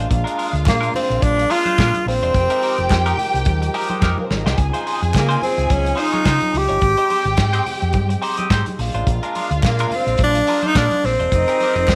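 A close-miked tenor saxophone with slapback echo carries the sultry melody from 0.7 s, riding over a danceable disco groove at 107 BPM with a light 16th-note swing. A round, punchy fingered bass and a soul drum kit with a tight kick and rolled-off top drive the pulse, with a drum fill at 4.0 s, while bright, soft-handed congas and a hollow, very quiet group handclap sit in the background. A twangy clean electric guitar through wah, a lush, woody string section and a mellow French horn section holding sustained chords fill out the harmony as it moves through Bb7, Fm11, Dbmaj9 and Abmaj7, all in a light reverb.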